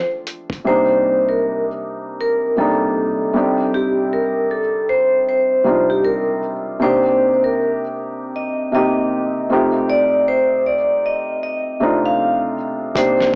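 Heard through a small speaker and the softened veil of home cassette tape, this lo-fi hip hop excerpt sits in a moderate studio reverb with a gently dulled top end. The mood is reflective and melancholic, moving at an unhurried pace with a swung sixteenth-note feel. A vibraphone struck with hard mallets carries the melody up front, its metallic, ringing tone shaded by a medium motor vibrato and a boxy small-room colour. Beneath it, a felt-muted upright piano supplies soft, mellow accompaniment, intimate and close with its thick felt, moving through Cm7, Fsus2/C and F13/C. A dusty soul sampler-style drum kit, gritty and overdriven with a thumpy kick, fat snare and hi-hat, appears only in brief bursts around 0.3 seconds and again near 13.0 seconds. Those moments frame the piece, which is cut from a longer work.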